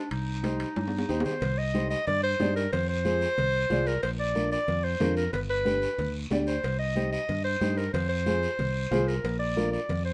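Danceable and passionate, this cumbia excerpt is cut from a longer piece in straight 4/4. A clear, classical-style clarinet carries the solo melody up front, with a fingered electric bass, direct and amped, also up front. Congas with a thick, damped, high-tuned skin played with soft hands sit close and dry in the background, alongside ringing metal-shell timbales and cowbell, while a raspy, vintage, band-limited guiro adds its scrape. A thumb-plucked nylon-string guitar enters at 0.4 s with a small, warm accompaniment. A drum fill at 0.8 s leads into a new section at 1.4 s, and the chords move through Cm, Fm, Bb and G before returning to Cm, Fm and Bb. Moderate studio reverb lends the mix a modest sense of room.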